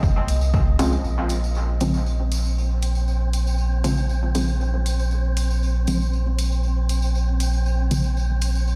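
Heard through a big sound system in a bare stone room, this cavernous, hypnotic dub techno excerpt in Bb minor at 118 BPM opens on a punchy, overdriven electronic kick that stops at 0.6 s, while a round analog bass with tube saturation and sidechain pumping sits up front beneath a jingly tambourine, an overdriven electronic hi-hat, a breathy, wind-like tuned noise texture, and muted, detuned sawtooth chord stabs on Bbm9 with chorus, phaser and dub echo that enter at 0.8 s and take a filter sweep from 1.0 s.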